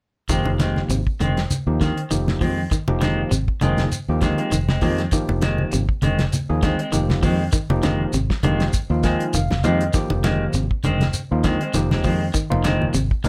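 Afrobeat with a defiant, driving feel, cut from a longer piece, where a gritty, barky overdriven tine electric piano comps and adds fills at 8.7 and 13.0 seconds over a round, foam-muted fingered bass, a damped 70s drum kit with a fat snare and tight kick, a twangy slightly broken-up guitar playing arpeggios in the background, clean hollow-body stabs with slapback echo, a grainy shekere, and low-tuned congas with hard hands entering at 0.5 seconds, all set in a moderate club ambience.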